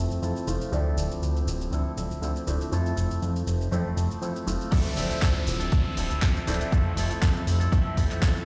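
Heard through a big sound system in a bare stone room, this funky, nostalgic filtered disco house piece sets a clear baby grand piano with audible action noise under a phaser, a twangy electric guitar riff through an envelope filter with vintage sampler grit, a fat, detuned sawtooth bass up front, and a dusty, overdriven sampler-style kit of handclaps, hi-hat and shaker, all pumping beneath a filter sweep alongside a barely audible tambourine, until the drop at 4.7 seconds brings in a punchy analog kick and a downlifter in the background.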